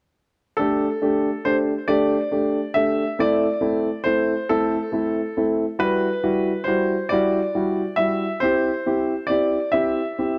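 A gentle, straight 6/8 lilt at 46 BPM (dotted quarters) carries this tender, heartfelt pop piece in G major, cut from a longer work, with two pianos playing together from 0.6 to 10.4 seconds. A woody, natural upright piano sits up front with the accompaniment over Gsus2, Am, Emadd9 and C. A clear, polished concert grand adds a short-sustained melody touched with delay. Light reverb and a dark production give the whole a close, intimate sound.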